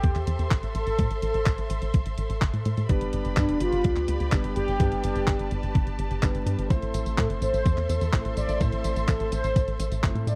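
An italo disco excerpt with a melodramatic, bittersweet mood opens on a thumpy, tape-warm electronic kick and a clean 12-bit drum machine of handclaps, hi-hat and tambourine, both re-recorded in a large room, beneath a tight, punchy sawtooth sequencer bass with a dark filter pluck up front, a round, brassy synth lead treated with chorus, cassette tape and tape echo, and lush, bowed studio strings holding sustained chords, before a dark, low-pass-filtered grand piano with vintage sampler grit adds stabs from 2.9 s, all set in a dry, close 1970s-style recording with vinyl crackle.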